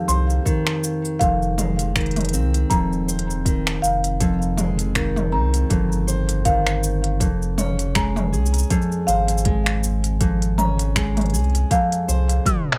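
A relaxed 80 BPM pulse in 4/4, swung on the sixteenths, carries this intimate, wistful folktronica excerpt in F minor. Up front, a fingerpicked steel-string dreadnought acoustic guitar spins full-bodied arpeggios with audible finger squeak, lightly echoed by delay, while a marimba played with soft mallets adds a woody, mellow second line high above on rosewood bars, also touched with delay. A deep, round sine sub bass sits up front with a fast attack and sustained notes. The organic electronic drum kit brings finger snaps, smooth hi-hat, shaker and toms, and a soft electronic kick joins at 0.5 s; both drum parts are overdriven and re-recorded in a small room. The harmony moves from Abmaj7 to Fm7, then settles on Dbmaj7/F at 7.2 s, all within light reverb, before a tape stop pulls the sound down at 12.5 s.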